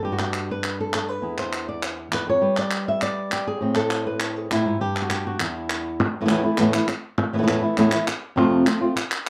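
A fingerpicked flamenco guitar with fresh strings and audible finger squeak sits up front, carrying the mournful, dramatic melody across E, G and Am before turning to Esus4 at 6.0 seconds and F at 8.4 seconds, while crisp palmas hand claps keep time at 201 BPM in this dark-toned flamenco excerpt set in a moderate studio room.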